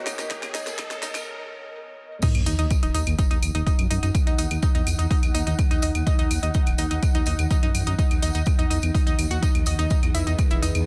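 This driving, melancholic slice of melodic techno at 125 BPM opens on a build-up in Eb phrygian, where a moody, detuned analog pad holds a Bmaj7 chord over a cloudy granular texture pad while an electronic riser and drum fill build under a filter sweep. After a short break, the drop lands at 2.2 seconds on Ebm with a sub impact, and a deep, rumbling detuned saw bass enters at 2.3 seconds with sidechain pumping. A punchy, overdriven kick sits up front, joined by a deep house kit with a fat snare, metallic hats, claves and crash, plus a jingly, close tambourine in the background. Throughout, a round analog pluck spins arpeggios through chorus, delay and a cassette tape colour, and from 3.5 seconds a very quiet, swarming drone slowly evolves beneath. The pad returns near the close as the harmony moves to E, all within a dense, heavily limited modern master.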